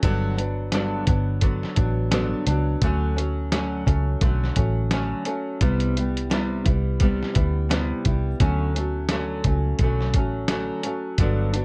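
Laid-back and nostalgic, this bedroom-pop take on indie pop sits at 86 BPM in D major with a swung sixteenth-note feel, cycling through Gmaj7, Dmaj7, Cmaj7 and Dmaj7 across its 11.6 seconds. Up front, a fingerpicked flamenco guitar carries the accompaniment with audible finger squeak, bathed in lush chorus and a warbly pitch drift. Beneath it, a foam-muted, round vintage electric bass holds the low end, while a compressed, muffled sampler-style kit with a thumpy kick, medium-tuned snare and hi-hat sounds re-recorded in a small room, all within a dark production with light reverb.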